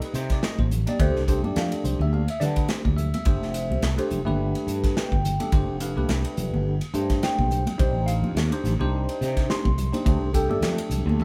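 Bright and soaring, this short cut from a longer electric jazz fusion piece moves at 106 BPM in 4/4 with a light 16th-note swing, centered on G mixolydian as the chords move through Cmadd9, Dm7 and G9sus4. A bell-like, clean tine electric piano with a phaser supplies the harmony up front. Beside it sit a punchy acoustic drum kit with bright cymbals and a medium-tuned snare, and a growly, amped fretless bass that enters at 0.1 seconds. Soft-handed, high-tuned congas with a thick skin and a saturated tone join at 0.6 seconds in the background, and the band plays together in one room with a moderate studio reverb.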